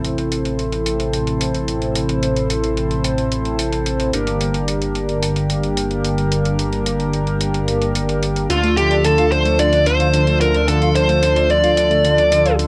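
A warbling analog pad under a filter sweep opens this moody, nostalgic synthwave excerpt in D minor at 110 BPM, joined from the start by glossy chorused polysynth stabs, a thick detuned saw bass with tube saturation and a quiet, tape-warmed electronic hi-hat, moving from Am through Gm to Dm before a dark, overdriven lead guitar with analog delay takes the melody up front at 8.5 seconds over slightly broken-up background guitar arpeggios, all steeped in the warm character of a home cassette recording in a small booth.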